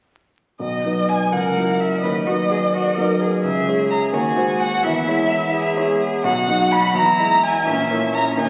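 A rich, expressive solo violin carries the melody in this lively, graceful classical-period movement for piano trio, its bowed line coloured by vibrato, soft attacks and gentle portamento. A grand piano enters with the violin at 0.6 seconds, its present, long-sustaining accompaniment ranging from deep bass notes up to the violin's lower register. At 1.3 seconds a single cello joins with a smooth, even second line, bowed with light vibrato and sitting lower in the mix. The quick 6/8 movement moves through minor and seventh chords before reaching a major-seventh chord and closing on a diminished chord. The whole passage runs to 8.5 seconds, a clear fragment cut from a longer piece. A wet concert hall reverb surrounds the trio, and the sound of a very old 78 rpm record adds vinyl crackle.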